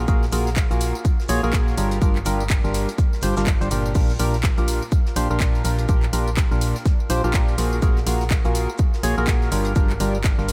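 A hollow, up-front percussive organ stab carries the riff through this euphoric, uplifting piano house excerpt at 124 BPM in Bb major, its chorus, delay and sidechain pumping giving it a breathing lift over chords that move from Gbmaj9/Bb through Gm7 to Bb6. Beneath it, a dark, organ-like FM bass pumps in the low register while a punchy electronic kick sits up front from 0.1 seconds, joined by a layered house kit of warm hats, handclaps, tambourine and crash in a small room. A very quiet, dry 70s acoustic kit adds a fat snare, shaker and hi-hat to the swung 16th-note groove, and the whole mix sits in light reverb.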